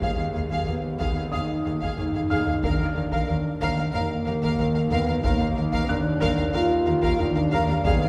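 Over a straight 92 BPM pulse in 4/4, this mysterious, eerie suspense cue, cut from a longer film score, sets rich vibrato violins on the melody and a smooth second line above warm violas, mellow horns holding sustained chords, a ringing thumb-plucked harp riff, a clear distant double bass and a very quiet cello bass, a tense, bright string-like drone, hard-stick taiko with a fill at 2.0 seconds, a soft felt-muted upright piano texture in the background, and a barely audible timpani fill at 7.9 seconds, all moving from Fdim/Eb to Bb/Eb within a reverberant scoring-stage space heard from further back.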